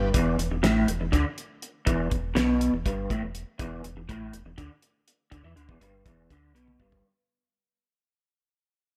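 A small, close room frames this short psychedelic rock excerpt in 7/8, mysterious and hypnotic, with a dark, slightly broken-up electric guitar riff played through a small old amp and a rotary speaker, picked and compressed with a lo-fi edge up front. Beneath it a deep, sine-like sub bass with an octave holds full, sustained notes, while a cloth-damped, thuddy acoustic kit with a fat snare, tight kick and rolled-off top sits close in the mix from 0.1 seconds. The whole passage fades out over its seven seconds, closing on a drum fill at 6.7 seconds.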